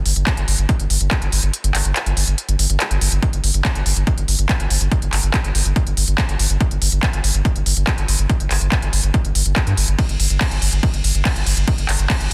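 A round analog bass sits up front, deep and dark with a nasal edge, its fast attack giving way to sustained notes that range from G1 to G2 and hold the low end throughout this short cut from a longer psychedelic trance piece. The mood is intense and driving, moving at 142 BPM in a straight 4/4. A punchy electronic kick drum enters at 0.3 seconds, drops out between 1.5 and 3.2 seconds, then returns to pound alongside the bass. A layered techno drum kit adds handclaps, smooth hi-hats and ride cymbal, its tape-tinged, small-room character matching the kick's produced sound. The mix is dry and close, with a dense, heavily limited modern master that keeps the whole track pressing forward.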